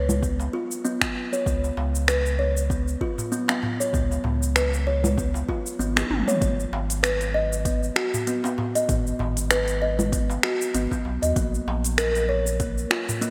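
A round, sine-like sub bass pulses with sidechain pumping from the very start, joined almost at once by an overdriven organic electronic kit of congas, finger snaps, smooth hats, shaker and toms in gated reverb, a crisp, deep metal-shelled darbuka, a layered electronic kick, and woody, ringing kalimba arpeggios trailing delay. This peaceful, warm organic downtempo piece moves at 97 BPM in 4/4 with a 56% swing on the 16ths, shifting harmony to Abm at 6.4 s after the kick drops out at 5.8 s and a drum fill enters at 5.9 s, and reaching a chordless passage at 11.4 s. A lush hall reverb and bright 1980s-style digital production frame the airy kalimba and the up-front bass in this excerpt cut from a longer piece.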